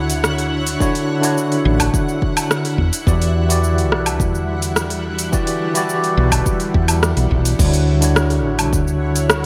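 A clean tine electric piano with delay, a shimmering, ethereal pad colored by chorus and phaser, and a round, punchy fretless bass open this smooth, wistful sunset chillout excerpt together, moving from Dmaj9 to Em9 and back. A deep house kit of cabasa, metallic hi-hats, rim click, woodblock and crash joins at 0.1 seconds, and an overdriven deep electronic kick arrives at 0.8 seconds. The piano, bass and kit sit up front in a bright 1980s-style digital mix bathed in moderate plate reverb.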